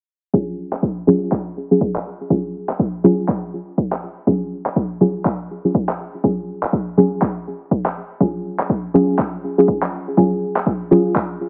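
A deep, nasal chord stab and a punchy electronic kick arrive together at 0.3 s, setting an earthy, hypnotic afro house groove at 122 BPM in 4/4 with a swung sixteenth feel, soon joined by layered electronic handclaps at 0.7 s. The dark, detuned stab sits up front on a Dbadd11/Gb chord, pumping with sidechain compression and colored by chorus, delay and a filter sweep that runs across the whole passage. Light reverb and a gentle top-end roll-off keep the sound soft and mellow in this short cut from a longer track.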